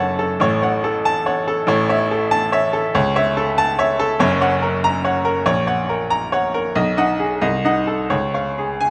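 Close, detailed microphones and a moderate recital-hall reverb (1.7 s) frame this heroic, brilliant 8.9-second excerpt of a classical virtuoso piano study in 6/8 at 94 BPM in dotted quarters, played with rubato on a solo baby grand tuned to A4 = 438 Hz, its bright, natural, short-sustained tone sitting up front across a range from F#1 to A#5 as the harmony moves from F-sharp minor through A major and settles into F# major at 4.2 s before a diminished chord leads to a closing C#.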